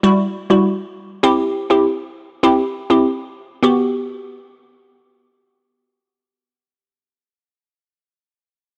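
Bouncy and summery, this short dancehall cut moves at 100 BPM in 4/4 with a light 16th-note swing, set in G major and tuned slightly sharp to A4 = 441 Hz. A single glassy wavetable pluck carries the accompaniment from 0.0 to 7.3 seconds, its crystalline, nasal tone touched with chorus and sitting up front, outlining Emadd9 and C before settling on Gmaj7 at 3.6 seconds. Light reverb softens a dry, gritty sound marked by transformer saturation and the character of cassette tape.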